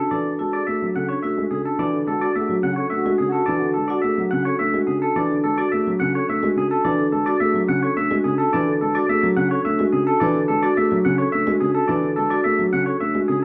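A twangy, clean electric guitar carries the melody up front, ringing over soft-mallet marimba arpeggios that sound round and mellow in this propulsive, hypnotic stretch of minimalist pattern music in D lydian at 107 BPM in 3/4. Underneath, a dark concert grand piano gives boxy, intimate accompaniment with deep bass and audible action noise, while a French horn with light vibrato and a soft attack holds a single background note from 1.8 to 4.9 seconds. A wet large studio reverb surrounds this short cut from a longer piece, which opens on a Dmaj9 chord.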